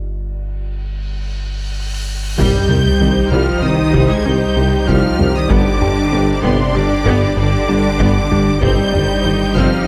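Close, detailed microphones and light reverb give this brooding, vast excerpt of a hybrid orchestral and electronic film score a clear, present sound, moving at 96 BPM in 5/4 in C minor. It opens on a deep, clean sine sub bass alone, joined at 1.1 seconds by a huge, dark cymbal swell and sub drop that carries into an impact. At 2.4 seconds the full ensemble arrives over Cm, then G, then Cm/G: a lush violin section sings the high melody with vibrato and a focused, smooth top, while a second violin line, a close studio viola section and a background cello section fill out the bowed strings. Beneath them, a dark, roomy French horn section holds sustained chords, and a very quiet double bass section and distant solo tuba reinforce the low end alongside a mellow, nasal synth bass riff. A warbly, lo-fi pluck adds very quiet arpeggios, a taiko ensemble played with heavy sticks drums from the background, and from 3.8 seconds a moody ambient pad with chorus and built-in reverb deepens the sustained harmony.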